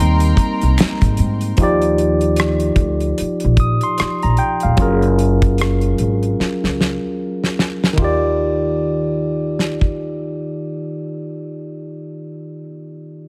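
A bright, barky tine electric piano sits up front through a combo amp in this sensual, soulful R&B and neo-soul excerpt at 75 BPM in Eb major with a swung 16th-note feel, opening with a short solo passage over a distant, floating string section bowed sul tasto. A woody, thumpy pizzicato upright bass and a dry, damped 70s drum kit with a fat snare and tight kick carry the groove, while a band-limited egg shaker and finger snaps sit in the background until 1.6 s, when the strings also fall away. The chords move through Abmaj9, Ebmaj9 and Gbmaj9, a drum fill arrives at 6.4 s, and the mix carries little reverb.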